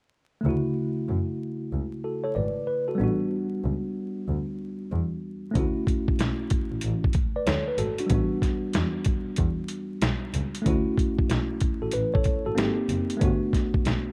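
Relaxed and warm, this jazz-hop excerpt in D major moves at 94 BPM with a swung 16th-note feel, opening with a worn, slightly out-of-tune tine electric piano up front on Dmaj7 and rootless A9sus4 chords, while a single bowed double bass plays smooth, even lines with vibrato beneath. At 5.6 seconds a gritty, pitched-down, compressed boom bap sampler-style kit arrives up front with a thumpy kick, medium-tuned snare and hi-hat, and the harmony later passes through G#maj7 to a rootless Gmaj7. Light reverb, a dark production and vinyl crackle colour the recording.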